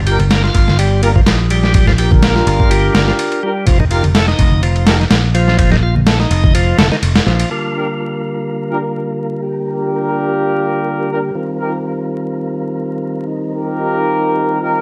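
Raw, gritty breakbeat in which an overdriven, thumpy sampler-style drum kit and a growly, punchy picked electric bass sit up front with background congas and a shouting, key-clicking tonewheel organ riff through a slow rotary speaker, while dark, soft-attack brass stabs run throughout, and at 7.5 s the opening parts give way to mellow, round sustained chords from a percussive tonewheel organ with fast rotary, chorus vibrato and sidechain pumping, all over a bed of vinyl crackle.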